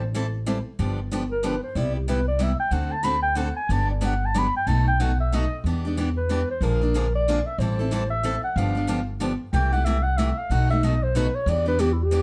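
Fiery and swinging, this short cut from a longer piece of acoustic string swing in the jazz manouche style moves at 185 BPM in 3/4, with a 59% swing on the eighth notes in E minor. A dark clarinet carries the melody as a jazz-style solo from the start. Its vintage subtone is colored by light vibrato, scooped notes and a plate reverb, and it sits up front. Beneath it, a pizzicato upright bass with gut strings gives a woody, thumpy low end. A picked steel-string acoustic guitar joins at 0.1 seconds, its bright, boxy accompaniment outlining changes such as Am7, G7, Cmaj7, D7 and B7 before settling on Em7. Two statements of the same section follow one another, the second starting at 5.6 seconds, and the whole is framed by light reverb and a dark, warm production.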